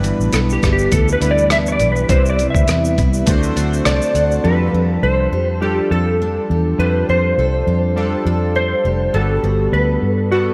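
Sunny and laid-back, this excerpt of dreamy indie and bedroom pop moves at 102 BPM with a gentle sixteenth-note swing, soaked in plate reverb over chords from G6 through Cmaj7 and D7 to F69 and Gmaj9. A gritty, compressed sampler-style kit with a thumpy kick, rim click, hi-hat and shaker sits up front beside a dark, round, foam-muted bass, while picked dreadnought acoustic guitar with a warbly drift and glossy, airy retro synth keys fill in beneath, joined by a very quiet vintage string-machine cello pad. A clean, dark lap steel carries the slide melody through ensemble chorus and tape echo from 0.3 s, a short synth keys fill arrives at 3.6 s, and the kit and cellos drop out at 4.4 s.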